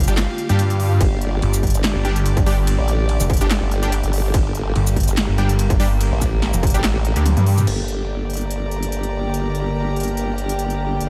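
Menacing and heavy, this heavy wobble dubstep fragment in G minor sits at 144 BPM in 4/4 with a half-time, lightly swung feel, opening straight into a drop on a G minor chord. A snarling distorted saw bass growls up front with detuned unison and a moving notch, driving the low end until 7.7 s, while a formant-sweep wobble bass, chorused and overdriven, carries on through the whole passage. A distorted, tape-warm electronic kick sits beneath a big-room dance kit of crisp hats, a punchy snare, handclaps, shaker, ride, crash and toms, which was re-recorded in a large room and plays a drum fill just before the second section begins at 7.7 s. Behind them, an evolving wavetable pad morphs with slow-attack, long-release chords, chorus, built-in reverb and sidechain pumping, and a close, biting chamber string section adds earthy bowed texture with light vibrato and its own sidechain pumping. A very quiet detuned supersaw stab with a filter sweep sounds through the first part, and light reverb places the whole mix in a modest space.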